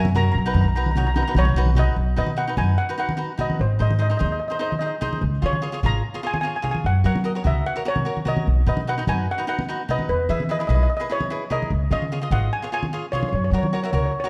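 A bright, shimmering double-seconds steel pan, struck with hard rubber sticks, sits up front and carries the melody in this carefree, bouncy calypso excerpt at 148 BPM in B major. Crisp picked cavaquinho fills out the accompaniment, while a woody pizzicato upright bass with steel strings also sits forward, and low-tuned, damped congas with a thick skin add a live-room pulse. A moderate recital-hall reverb and a dark, warm production round out the sound as the chords move from B through G#, C# and F#, back to B, then on to E, C# and F#.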